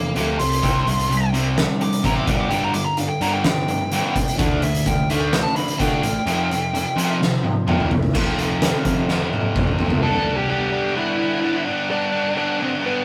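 A rough rehearsal-room recording with warm saturation and a wet booth ambience carries this cathartic, bittersweet quiet-loud alternative rock excerpt at 128 BPM in G major, where a fuzz-toned lead guitar solos over a half-time feel until 8.1 seconds, a bright, up-front distorted guitar and a raw overdriven garage guitar drive the riff, a growly, punchy overdriven bass anchors the low end, an oversized low-tuned drum kit with a boomy kick, fat snare and dark cymbals pumps in a big room with fills, and a full-bodied steel-string acoustic guitar picks arpeggios in the background, briefly at the start and again from 8.1 seconds, before the lead guitar returns at 10.0 seconds.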